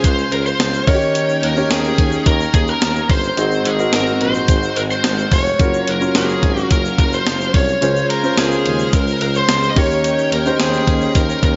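A straight 4/4 groove at 108 BPM drives this glossy, uplifting 1980s-style pop excerpt in Db major, where a thumpy, up-front 12-bit drum machine with gated reverb and a grainy shaker underpin a dark, overdriven lead guitar melody with tape echo, a deep-voiced concert grand piano, a shimmering chorused string machine in the background and a tuba bass with light vibrato, all moving through Dbmaj7, Eb7, Ab7 and Gbmaj7 across 11.6 seconds.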